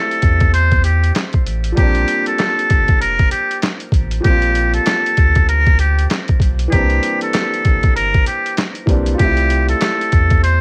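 A swung boom-bap groove at 97 BPM in 4/4 sets a confident, warm mood in F major, with a gritty, pitched-down sampler kit of thumpy kick, medium-tuned snare, hi-hat and handclaps sitting up front, while a round, sine-like sub bass with transformer saturation holds down the low end. Over smooth, vintage grand piano chords moving from Fmaj7 to Bb6, C7 and back to Fmaj7/C, a breathy, buzzy trumpet with a metal mute plays an intimate, jazz-style solo melody, filtered and treated with plate reverb. Cassette tape colours the trumpet, piano and drums, and vinyl crackle and light reverb give this short cut from a longer piece a homespun, lo-fi feel.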